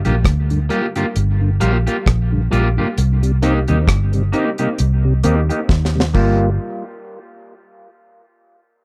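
This short cut from a longer dub reggae piece opens with the full band at once: a deep, dry drum kit, a foam-muted fingered bass and a mellow tonewheel organ all start together, with a picked electric guitar joining at 0.1 seconds. At a relaxed 66 BPM in 4/4 with a swung sixteenth-note feel, the music sits in G minor and moves from Gm7 to Cm7 and back, giving a spacious, heavy mood. The bass sits up front, dark, round and punchy with tube saturation, while the drums pair a high-tuned snare and tight kick with hi-hat, rim clicks and a crash cymbal, and a drum fill arrives near the end of the phrase. The organ is lightly overdriven, with chorus vibrato, a slow rotary speaker, a low-pass filter and dub echo, as a filter sweep runs through the passage. The guitar, slightly broken-up and twangy, is also low-pass filtered and sent into dub echo. The close, dry 1970s-style studio sound carries little reverb, and the band drops out around 6.6 seconds, leaving a brief stretch after the chords stop.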